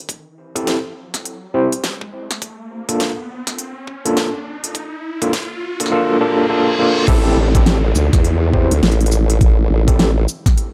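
Glitch hop at 103 BPM in A phrygian, funky and swaggering with a 16th-note swing: a knocking electronic kick and a pop kit with a fat snare, crisp hats, shaker and crash drive a barky, overdriven electric piano playing stabs through tremolo, sidechain pumping and tape echo while its filter sweeps and a riser and reverse cymbal build over Am7 and Bbmaj7 until a wobbling sawtooth formant bass drops in at 7.1 seconds, all in a gritty hardware recording with light digital reverb cut from a longer piece.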